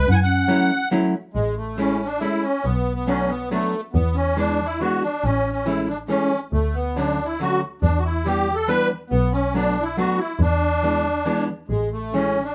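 Charming and nostalgic, this short excerpt from a longer musette waltz moves in a rubato 3/4 at 139 BPM in A major. The musette accordion carries the melody throughout, its reedy, shimmering wet tuning sitting up front with an airy edge. A dark, breathy clarinet with subtone and vibrato offers a whispered second line only in the opening 0.9 seconds, sounding distant and intimate in a jazz style with scooped notes. A single bowed double bass holds the low end from 0.1 seconds, warm and expressive with portamento and a soft attack. From 0.5 seconds a clean, picked hollow-body archtop guitar, miked and amplified, adds dark electric accompaniment through chords such as F#m7, Amaj7, Bm7, E7 and Dmaj7. A moderate studio reverb frames the ensemble.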